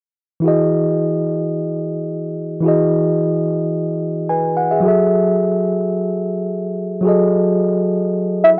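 A soft, octave-layered synth lead stands out, sitting up front for one brief E5 note at 8.4 seconds, its round, full tone built from triangle and sine layers with a sub octave beneath, a fast attack, a sustained body, dark shading and a touch of chorus. The rest of this short amapiano clip, cut from a longer piece, belongs to a mellow tine electric piano that plays accompaniment from 0.4 to 8.6 seconds, clean and direct in its sound and placed close to the listener. The piano moves from Emaj7 to F#m9 at 4.8 seconds, ranging from E3 to G#5 in E major, then adds a fill at 8.4 seconds just as the lead appears. The groove runs at a relaxed 109 BPM in straight 4/4, with a warm, easygoing mood. A digital ambience surrounds it, and the dry, gritty hardware sound carries a cassette-tape character, with tuning set slightly low at A4 = 435 Hz.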